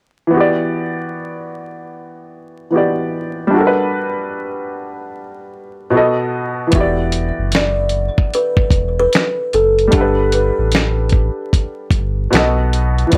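Lo-fi hip hop with a melancholic, reflective mood and a swung feel, cut from a longer piece: a woody, slightly detuned upright piano with cassette-tape colour plays Em7, Gmaj7 and B7 chords alone until 6.7 s, when a gritty, compressed sampler-style drum kit of thumpy kick, fat snare, hi-hat and finger snaps enters up front with a deep sine sub bass with octave, and from 6.8 s a mellow, hollow kalimba carries the melody through tape echo, over vinyl crackle and small-room reverb.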